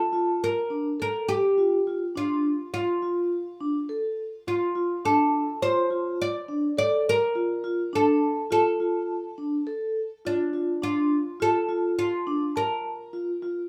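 A plectrum-plucked oud carries the melody here, its woody, deep voice and doubled strings sitting up front between D4 and D5 for the full 13.7 seconds of this short cut from a longer contemporary instrumental piece. Beside it, a vibraphone played with soft mallets spins arpeggios from D4 up to A5, its ringing, airy tone colored by a medium motor vibrato. The tempo sits at 104 BPM in an unusual 5/4 metre with a straight feel, giving the music a gently lopsided pulse. Harmony rests on a single Bbmaj7 chord in Bb major, which lends the passage a hopeful, shimmering mood. A moderate studio reverb wraps the two instruments in a modest sense of room while keeping both parts close and present.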